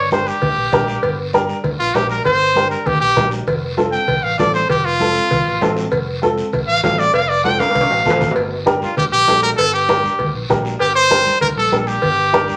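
A straight 4/4 cumbia rhythm at 196 BPM drives this passionate Latin excerpt in G minor, where bright background congas, raspy guiro, ringing cowbell and timbales, and a round, punchy fingered electric bass support a dark, woody, slightly detuned upright piano up front and a brilliant trumpet soloing over them with light vibrato and scooped notes until a drum fill from 7.4 to 8.4 seconds opens a new section, all set in a wet small-room reverb.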